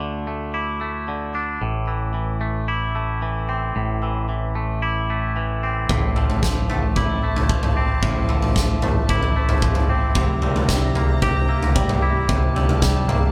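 A straight 4/4 pulse at 112 BPM drives this euphoric, cinematic post-rock excerpt in F major, where bright, twangy clean guitar arpeggios and a soft, bell-like glockenspiel played with rubber mallets ring over a growling overdriven fingered bass from the start, joined at 5.9 s by a big, up-front acoustic rock kit of tight kick, snare and toms and a distant bowed string section adding expressive sustained chords with vibrato and portamento, all in a live room with moderate reverb as the chords move from Dsus2 and Am to Fmaj7/A and C7.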